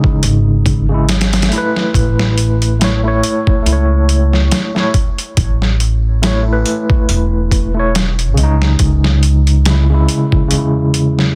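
Smoky and brooding, this short trip hop excerpt at 70 BPM with a lazy sixteenth-note swing pairs a barky, amp-driven tine electric piano carrying tremolo and tape echo over C#m and A chords with a pitched-down, 12-bit boom bap kit of thumpy kick, medium-tuned snare and hi-hat in a small room, while a woody pizzicato upright bass enters at 0.2 seconds, all pressed into a dense, heavily limited, dry mix.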